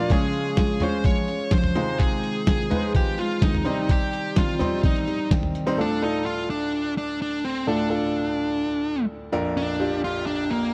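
A dark, smooth electric lead guitar with overdrive carries the melody up front in this earnest, dramatic piano-driven pop passage at 127 BPM, cut from a longer piece, over a bright, brilliant grand piano with short sustain. A muffled, pitched-down, sampler-style drum kit with a thumpy kick and tape-warm compression drives the opening alongside a full-bodied picked jumbo acoustic guitar riff set in the background. Both drop out near 5.8 seconds, leaving lead guitar and piano to move from D minor to Bb by 9.3 seconds, all in a dry, close 1970s-style studio sound with digital ambience.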